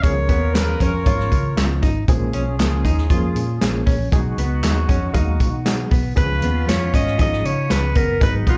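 Heard as a live gig through the venue's PA, this short cut from a longer piece carries club ambience around a fairly dry overall sound. It is uptempo 1960s-style soul in a straight 4/4 at 117 BPM, passionate and urgent, moving through C#7, A#m7 and G#m7/B before returning to C#7. A clear alto saxophone with vibrato, subtone and scooped notes states the melody, drops out at 1.8 seconds, and returns at 6.2 seconds, when a bell-like glockenspiel with soft plastic mallets also joins in the background. A dark, tight horn section with light vibrato plays a second line throughout. A barky, reedy electric piano with light overdrive and fast tremolo supplies accompaniment, and a clean hollow-body jazz guitar enters at 0.3 seconds with a picked riff. Underneath, a round, foam-muted fingered electric bass and a punchy, up-front vintage drum kit with a rolled-off top drive the groove, while distant tambourine and handclaps add texture.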